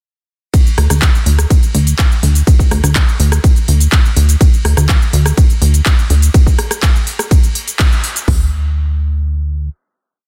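A plucky, funky analog bass with tube saturation and sidechain pumping sits up front from 0.8 seconds, playing mellow off-beat notes around D2 over a punchy four-on-the-floor house kit of kick, floor tom and open hat, and a quieter layer of crisp programmed hats, cabasa, rim clicks, ride and backbeat handclaps that pumps with the sidechain, driving this euphoric, uplifting progressive house piece at 124 BPM through a dry, dense, heavily limited drop with a band accent at 7.8 seconds before a final note carries it to 10.3 seconds.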